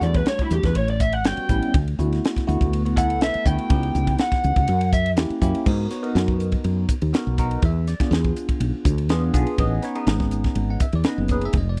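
A dark, overdriven lead guitar from a small cranked amp opens this funky, intense electric jazz fusion passage with a lo-fi picked solo that ends at 5.1 seconds. Underneath, a bell-like tine electric piano with phaser plays shifting extended chords, a woody, round fretless bass sits up front, and a crisp drum kit with a high-tuned snare, punchy kick, hi-hat, ride and crash keeps a straight groove. The sound is dry and close, like a 1970s studio recording, and the clip is cut from a longer piece.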